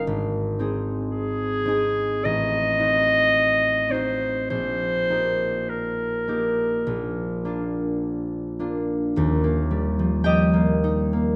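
Classical romantic music for clarinet and harp unfolds in a slow, lyrical, rubato 4/4, cut from a longer piece. The clear, soft-attacked clarinet sings the melody in a distant, roomy tone while the warm, fingerpicked concert harp rings beneath it over a deep range, moving from Ab through Adim7 and Bb toward a settling Eb. The clarinet falls silent at 8.0 seconds, leaving the harp alone until 11.4 seconds in a wet recital-hall reverb.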